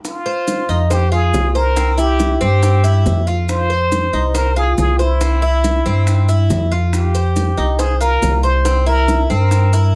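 A plunger-muted trumpet with a warm wah-wah tone and light vibrato carries the jazz-style melody in this sultry, danceable Cuban son and guajira excerpt at 139 BPM in F minor, over a metallic-ringing tres picking arpeggios from 0.3 seconds, a woody, thumpy gut-string upright bass sitting up front from 0.7 seconds, round low-tuned bongos struck with hard hands, and grainy maracas in the background, all in light reverb.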